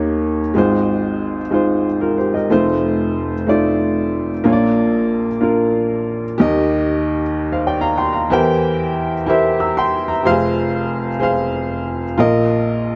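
A solo upright piano opens this soulful, uplifting gospel excerpt in Eb major, its woody, boxy, intimate tone sitting up front with audible action noise and long sustain, moving at a slow 62 BPM in 6/8 through Eb7, Ab6, F7 and Bb before a second phrase from 6.4 seconds turns to Eb, C7/E, Fm and a closing Bbsus4, set in light reverb and tuned to A4 = 436 Hz.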